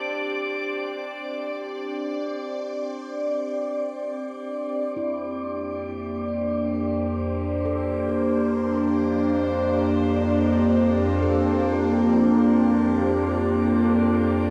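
In free time and tuned to A4 = 441 Hz, this luminous, weightless ambient fragment rests on a bright, morphing sine-toned wavetable pad held up front with phaser and its own reverb, its slow-attack sustained chords moving from Csus2 to C7sus4/F at 5.0 s and Gm7/F at 10.3 s, while a very quiet, ringing nitrided-steel handpan played with the fingertips enters at 5.0 s with airy, meditative arpeggios, within a dark production awash in long, wet shimmer reverb.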